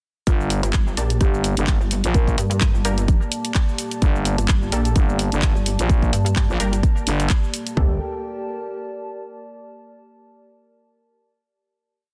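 Bass house at 128 BPM in G minor, aggressive and swaggering, built on a punchy four-on-the-floor kick and floor tom with layered garage cabasa, hi-hats and claps, under a thick, growling FM bass and a heavy, detuned pluck wobble bass with changing wobble speed, both saturated and pumping to the sidechain. Bold, detuned orchestra-hit-like synth stabs echo sparsely from 1.0 seconds, while a deep, moody analog pad with chorus and a dry, woody marimba with buzzing hardwood bars sit in the background, the marimba playing short phrases with tape echo until 2.8 seconds. A warbling, nostalgic lo-fi pad enters at 1.9 seconds and carries the final chord, ringing out last to 9.6 seconds, all within a dense, heavily limited modern master.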